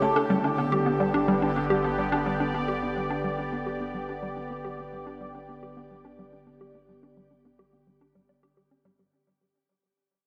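Ambient, sequencer-driven space music at 107 BPM in a straight 4/4, this short cut from a longer piece sits in G major and feels expansive and cosmic. A sweeping, resonant pad holds sustained chords up front, its detuned sawtooth and triangle tones with ring modulation evolving through a slow filter swell under chorus and shimmer reverb. Over it, a hollow, bouncy square-wave pluck plays a riff with a fast attack and short decay, its detuned sound carrying a noise layer and sub octave and trailing tape echo, chorus and shimmer. A bubbling stepped-filter texture holds a sustained G4 in the background, its random filter steps glinting through chorus and layered reverbs. Beneath it all runs a deep, round sine sub bass with tube saturation, and the whole mix is soaked in a wet spring reverb and heavy echo while a fade-out and a filter sweep on the arpeggiated synth run through all 9.1 seconds.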